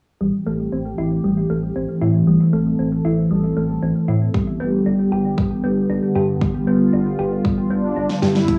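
Nocturnal and cinematic, this synthwave excerpt at 116 BPM in A minor sets a swirling, detuned phased analog pad and tine-like arpeggios from a thumb-piano-like synth pluck over a round, deep analog bass, with filter sweeps running through all three parts and cassette-tape coloring on the pad and pluck, before a punchy electronic kick drum arrives at 4.3 seconds as the harmony moves from Am7 to G, a brassy, dark synth brass melody with chorus and delay enters at 7.7 seconds, and a pop drum kit breaks in with a fat-snare fill at 8.1 seconds.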